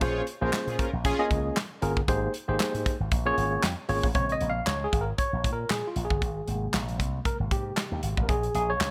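A studio reverb frames this funky, late-night slice of early-eighties boogie funk, cut from a longer piece, where an acoustic kit with a tight kick and medium-tuned snare sits up front with a bright, punchy slap bass pushed through an envelope filter over swung sixteenths. A fat, nasal analog synth brass line with chorus and vibrato sounds only for the opening 1.3 seconds, while crisp group handclaps join in the background from 0.5 seconds. A worn, slightly out-of-tune tine electric piano, lightly overdriven through its built-in speakers, plays Bbm9 and Abmaj9 chords before taking a solo from 4.2 seconds.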